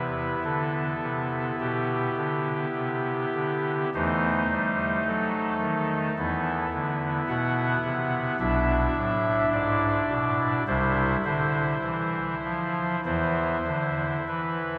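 Bathed in the long, cavernous reverb of a cathedral, this solemn, dark classical chorale for solo pipe organ moves at a slow, rubato 48-55 BPM in E minor. A soft reed stop, up front with an oboe-like, baroque voicing, a breathy chiff and a trembling tremulant, carries it through a brief passage that settles back onto a bare E chord at 13.0 seconds.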